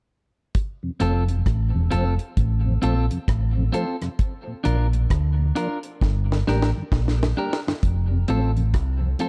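A round, amped fingered electric bass sits up front and anchors this sunny, laid-back roots reggae excerpt with a relaxed, swung feel. The deep reggae drum kit, dry and also up front, pairs a tight kick and high-tuned snare with rim clicks and hi-hat, its top end rolled off. A clean, picked and compressed electric guitar sits in a higher register, trailed by dub echo. A mellow tonewheel organ rests lower in the mix, colored by chorus vibrato, a slow rotary speaker and dub echo of its own. The chords move from F to Bb and Gm, and a drum fill from 6.0 to 7.8 seconds leads into a new section that returns to F. Dark, warm production with little reverb keeps the sound intimate.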